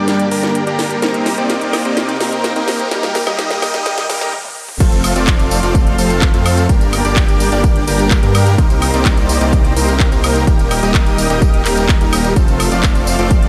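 Lightly reverberant, this euphoric, anthemic festival progressive house excerpt opens with a build-up in which a huge, airy, bright detuned supersaw lead plays its riff through a sweeping low-pass filter and digital delay. Beneath it sit a lush, slow-attack pad in the background, a faint riser from 0.9 s, and a house drum kit of cracking snare, metallic hats, handclaps, tambourine, toms, crash and woodblock playing fills before a brief stop. At 4.8 s the drop lands with a thick, saturated detuned saw bass and a punchy, overdriven electronic kick up front, while the lead, pad and bass pump against the sidechain as the chords cycle through Gm, Cm7, Eb and F.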